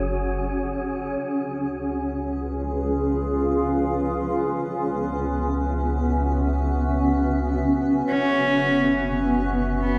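Reflective and spacious, this ambient passage in free time is cut from a longer piece and drifts through a lush, wet hall. A cloudy granular pad sits up front with sustained, blurred chords that evolve slowly, moving from F#5 through C#7 and C#m7 to an F#7 with the third omitted. Beneath it, a round analog bass holds deep, mellow tones, fading in from 1.2 s onward. A breathy, wind-like tuned noise texture adds a dark, airy shimmer only in the opening 1.2 s. At 8.1 s a close, bowed cello enters up front, its rich, nasal gut-string tone lending a reedy, period-style voice to the melody through delay.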